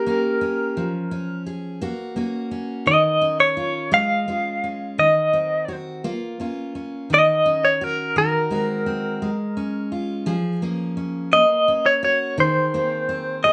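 A slow folk piece in 6/8 at 57 BPM counted in dotted quarters, this 13.5-second excerpt in Db major carries a nostalgic, tender mood with a straight feel. A direct-recorded clean electric guitar takes the melody between Bb4 and F5, its bright, twangy, compressed tone sitting up front with a shimmering tremolo. Beneath it, a picked steel-string acoustic guitar plays arpeggios from Eb3 to Ab4, its jumbo body giving a full, rounded foundation. Both guitars play throughout, as a band performing live in one room, with moderate studio reverb adding a gentle sense of space. The harmony drifts through minor-sixth and seventh colours, opening on Bbm6, passing through Ebm7 and Ab7, and closing on an unresolved Abadd9 that leaves the phrase hanging.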